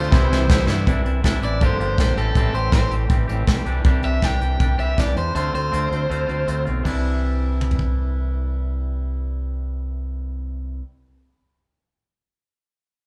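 A roomy live-band sound in a moderate large studio reverb frames this carefree, jangly indie rock clip in C major at 160 BPM, cut from a longer piece. Brushed drums sit up front with a punchy kick and a fill that leads into a bright, compressed overdriven lead guitar solo from 0.9 to 6.9 seconds. Beneath it, a clean, twangy fingered guitar riff and a growling, overdriven fingered bass carry on to about 10.9 seconds, while at the very start a reedy combo organ with heavy vibrato, a hollow-body overdriven guitar riff in the background and a barely audible, crisp group handclap add brief color over chords moving through Cmaj7, Gm7, Am7 and Dm7.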